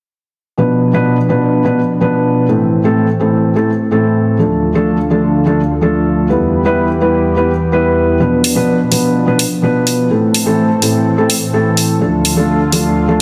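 A straight 4/4 pulse at 126 BPM drives this powerful, euphoric festival progressive house excerpt in A minor, where a felt-muted upright piano with a dark, intimate tone and dub echo plays up front over a lush, detuned sawtooth unison pad with chorus and a filter sweep, moving through chords from Bdim to Am, Dm and Em, before a layered electronic hi-hat joins at 8.4 seconds, all set in a moderate hall reverb and a dense, heavily limited modern master.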